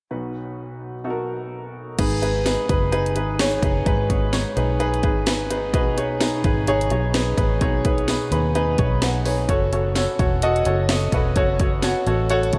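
Piano-driven pop at 128 BPM in 4/4 with a light sixteenth-note swing, uplifting and warm, tuned slightly low to A4 = 438 Hz and drifting through B, G#m, B6 and F#m. A smooth, vintage grand piano with subtle chorus sits up front and opens alone, until at 2.0 seconds a dark, foam-muted fingered electric bass and a layered electronic house kit with punchy kick, cracking snare, hi-hat and crash arrive, and a jingly, saturated tambourine hovers in the background from 2.5 seconds. The piano adds fills at 8.1 and 12.3 seconds, and the whole dreamy mix is soaked in a long cathedral reverb, cut from a longer piece.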